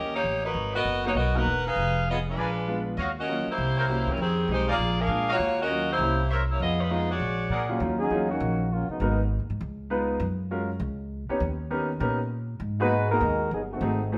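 Swinging and sultry, this jazz passage, cut from a longer piece, opens with a soft-attack saxophone section carrying the melody with vibrato over a plucked, woody upright bass, while a clear baby grand piano with audible action noise joins on accompaniment at 1.0 seconds. A mellow trumpet section with a smooth top adds stabs, and once the saxophones and trumpets stop, a warm trombone section enters at 8.0 seconds to take a solo second line with light vibrato. The band plays live together in one stone room bathed in wet reverb.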